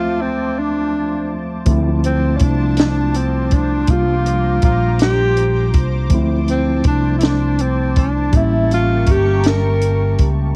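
This home recording on cassette has a light reverb and a late-night feel, cut from a longer slow R&B piece in a straight six-eight. A breathy tenor saxophone carries the yearning melody in a jazz style, its whispered tone, soft attack, scooped notes and vibrato sitting up front with a faint cassette-tape grain. A mellow tine electric piano, clean and heard through its built-in speakers, plays the accompaniment, while a lush pad of detuned sawtooth and square waves holds thick sustained chords behind it, colored by chorus and phaser. After an opening break, a dark, round fretless electric bass and a compact cocktail drum kit enter at 1.7 seconds. The drums are dry and up front, with a high-tuned snare, a punchy kick and hi-hat, and they share the saxophone's cassette-tape coloring. The harmony moves from Dm7 to C9sus4, back to Dm7, and lands on a tense A7b9.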